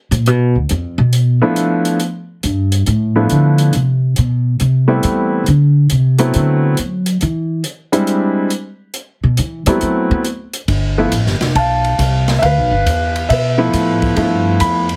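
Heavily compressed with a radio-like sheen and a moderate club reverb, this swinging jazz piano trio piece, taken from a longer performance, moves at 138 BPM in G mixolydian with a relaxed, warm mood. A woody, up-front pizzicato upright bass takes a solo through the first 10.7 seconds over an airy, polished drum kit with dark cymbals, a boomy kick and a medium-tuned snare. A clear concert grand piano with deep lows joins at 1.4 seconds, and the harmony moves through rich chords like G13, D13 and E7alt before returning to G13 as a new section begins at 10.7 seconds.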